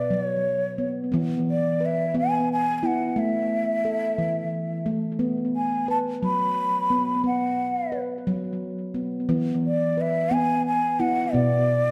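Meditative world music in B dorian at 59 BPM in a straight 6/8, gentle and hypnotic, this short passage is cut from a longer piece. A breathy, hollow bansuri with vibrato and a soft attack carries the melody up front. Beneath it, a close-miked handpan of nitrided steel plays ringing, bright arpeggios with tape echo, moving through B5, E5 and A5 harmonies before settling on Bm at 11.3 seconds, all set in a lush scoring-stage reverb.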